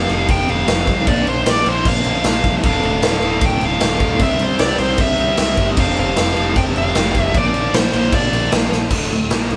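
Hard rock at 153 BPM in D minor with a menacing, driving feel, cut from a longer piece, where a dark, smooth overdriven lead guitar carries the melody until 8.5 seconds over two tight, bright distorted rhythm guitars riffing in the background, a fuzzy, punchy overdriven picked bass, and an up-front, gritty acoustic drum kit with a punchy kick, medium-tuned snare and crash in a pumping stone room that lands a fill at 8.7 seconds, the whole band sounding live in one room with light reverb as the chords move through F5, Bb5, Dm and C.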